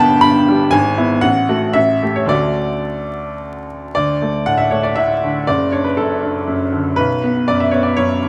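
A bright baby grand piano opens alone on a G add-nine chord, setting a hopeful, gently warm tone for this short romantic character piece cut from a longer work. The solo piano moves in a flexible, rubato 3/4 at roughly 107-123 BPM in D major, tuned to A4 = 439 Hz, spanning from F#1 up to B5. Its tone is brilliant and natural, sitting up front through close, detailed microphones, with a moderate recital hall reverb around it and a vinyl crackle beneath. The opening phrase passes through E over G#, F#m over A and an open A fifth before settling on D at 2.3 seconds. At 3.9 seconds a new passage begins on an open D fifth, then moves to D over F# and comes to rest on B minor at 7.0 seconds, closing the clip at 8.3 seconds.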